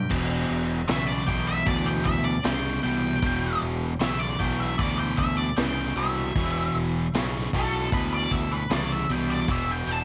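A small room's light reverb frames this heavy, brooding excerpt of power-trio blues rock and southern rock, set in a straight 4/4 over a single Em7 chord. A warm, overdriven, double-tracked electric guitar sits up front with a low picked riff. Beneath it a growling fingered bass, bright and overdriven, holds the bottom, and a vintage acoustic drum kit enters at 0.1 seconds with a high-tuned snare, punchy kick, dark cymbals and a rolled-off top, while a dark, distorted octave-fuzz lead guitar with wah carries the melody.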